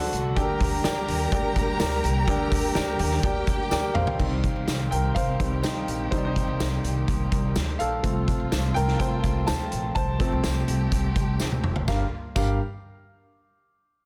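A clear, open concert grand piano sits up front and takes a solo from 4.2 to 11.9 seconds in this dramatic, earnest piano-driven pop excerpt in G minor, moving at 125 BPM in a straight 4/4 over chords from Gm through Cm and F to Gm7. A lush bowed violin section carries a second line until 4.2 seconds, while a smooth, expressive string section holds sustained chords with vibrato and portamento in the background. A woody pizzicato upright bass, a jingly tambourine and a loose, roomy acoustic drum kit with dark cymbals and a punchy kick fill out the small room, with drum fills marking the ends of the first two sections in a dense, heavily limited modern master.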